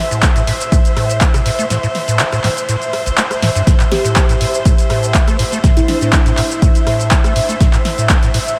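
Opening on a smooth, detuned analog pad and a dark, bowed string ensemble that both pump against the sidechain, this driving, raw acid house excerpt quickly adds a rubbery, resonant acid bass riff with overdrive, a punchy, overdriven drum machine of snare, handclaps, hi-hat, rim click and shaker, and an up-front analog kick that drops out from 1.7 to 3.7 seconds, while a woody, hollow kalimba melody with tape echo sits in the background from 3.9 seconds, the whole mix dreamy and soaked in a huge ambient reverb.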